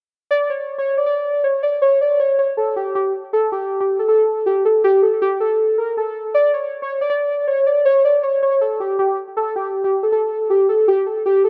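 Hip hop at 159 BPM in a half-time feel, this eerie, brooding excerpt is carried by a single part: warbly lo-fi synth keys playing a melody between G4 and D5 from 0.3 to 11.5 s. The keys sit up front with a detuned, nostalgic tone, mixing triangle and sawtooth waves with a filter sweep, a fast attack and decaying notes, colored by chorus, phaser and cassette tape wobble. A moderate spring reverb and the character of a home cassette recording, tuned slightly flat of standard pitch, deepen the hazy, unsettled atmosphere.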